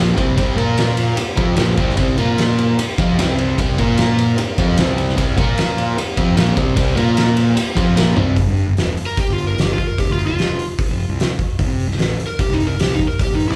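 A crunchy, bright, double-tracked overdriven guitar riff with slapback echo leads this driving, raunchy blues rock and southern rock excerpt at 150 BPM in C mixolydian, moving between C and Bb5 over a fuzzy, round fingered bass and an oversized, low-tuned drum kit with a muffled, saturated sound, fat snare and punchy kick. A very quiet tonewheel organ holds sustained chords with key click and slow rotary speaker, adding brief fills, and after a drum fill the guitar and organ drop out around 8.4 seconds, giving way to rootless Edim and F5 harmony. From 9.1 seconds an overdriven slide guitar played with fingerpicks carries the melody through plate reverb, slapback and digital delay, and the band sounds like a live gig heard through a club PA with moderate room reverb.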